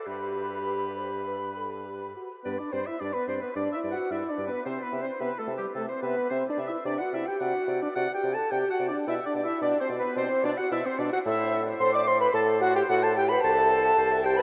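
A graceful, lively classical-period wind quintet movement in G major at a quick 109 BPM with a rubato feel, cut from a longer piece, where an airy, crisp-attacked concert flute carries the melody over a warm, smooth-topped oboe second line, a mellow French horn with light vibrato sitting up front, a soft-attacked clarinet in the background and a bassoon bass line, all bathed in a huge, wet reverb that suggests a vast, echoing space.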